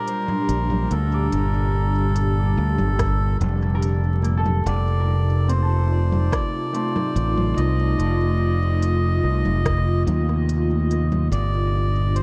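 Hazy and deep, this ambient dub fragment drifts at 72 BPM in 4/4 over a Gm to F7 progression, with a reedy, nasal melodica carrying the melody through gritty 12-bit sampler texture and tape echo, an airy, chorused pad holding soft sustained chords, an electronic kit of congas, smooth hi-hats and rim clicks trailing dub echo, a bright, punchy fingered electric bass sitting up front from 0.5 seconds, a ringing, thumb-plucked concert harp arpeggiating in the background under tape echo from 1.1 to 10.1 seconds, and a layered electronic kick tucked behind them from 3.0 seconds, all framed by light digital reverb and vinyl crackle.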